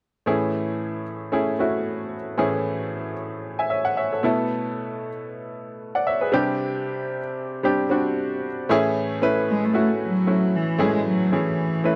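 Warm and uplifting, this short cut from a longer piano-driven pop piece moves at 114 BPM in 4/4, with a gentle 56% swing on the sixteenths in A major. A bright upright piano carries the accompaniment from 0.3 seconds, its brilliant, woody tone sitting up front across a span from A2 to G#5. The harmony moves from Amaj7 through Esus4/B and Csus2 before returning to Amaj7 as a new section begins. At 9.5 seconds a single bowed cello takes the melody in a dark, low register between E3 and A3, its vibrato touched by a slapback echo, and both parts play through to 12.0 seconds. Light reverb gives the dry, close sound of a 1970s-style studio.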